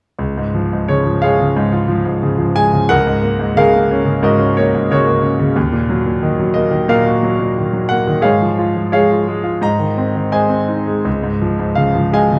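A bright grand piano opens at 0.2 seconds and plays alone in a lyrical classical solo in Db major, moving freely with rubato at roughly 82-93 BPM in a sunny, relaxed mood. Its brilliant, natural tone sits up front across a range from Db2 to Bb5, carrying chords that pass through Gbadd9/Db, Ebmadd9 and Ab before settling on Dbadd9 near 11.1 seconds. A moderate recital hall reverb and a dark, warm production surround this short passage cut from a longer piece.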